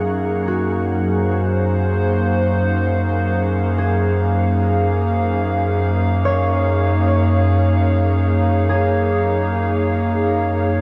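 A warbling, lo-fi tape-like pad sits up front from the start, holding detuned, mellow chords with chorus that move from Ab7/Gb to Ebm11/Gb at 5.4 seconds in this peaceful, nostalgic ambient piece cut from a longer work in free time. In the background, a thumb-plucked concert harp rings out arpeggios through delay and shimmer reverb, while a calm organ-like drone with ensemble chorus fades out over the full 10.8 seconds. The whole sound is bathed in a huge, wet ambient reverb.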